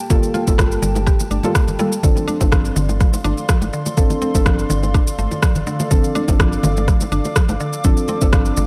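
A swung 16th-note groove at 124 BPM in 4/4 drives this hypnotic, earthy afro house excerpt, anchored by a deep, tape-warm electronic kick drum that sits up front, with a layered electronic shaker and rim click. Behind them, close, hard-hand congas with a bright edge and round, low-tuned bongos fill out the percussion in the background. A round, dark analog bass holds a single G1 with tube saturation and sidechain pumping, while a deep, mellow chord stab, full-bodied yet slightly nasal, adds cassette-tape colour, chorus and analog delay. A woody, mallet-like synth pluck plays arpeggios in the background through chorus and delay, and a moody, detuned analog pad sustains chords with a slow attack, ring-modulated shading and sidechain pumping. The harmony moves from Gm9 to Dm7/G at 2.0 seconds, all within a dry, gritty hardware sound.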